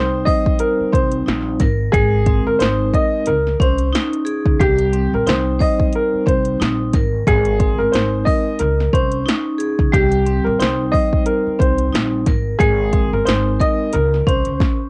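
A swung 90 BPM boom-bap hip-hop groove in 4/4 and C phrygian sets a dark, moody tone on this short home-cassette cut, where an overdriven electronic drum kit with a deep kick, punchy snare and metallic hats enters at 0.3 seconds alongside a woody, long-sustaining upright piano melody with tape-worn analog delay, a bright, ringing hard-mallet vibraphone with slow motor vibrato, and a pizzicato upright bass, all moving through Cm, Abadd9 and Dbsus2 before closing on Bbmadd9 in a dry room.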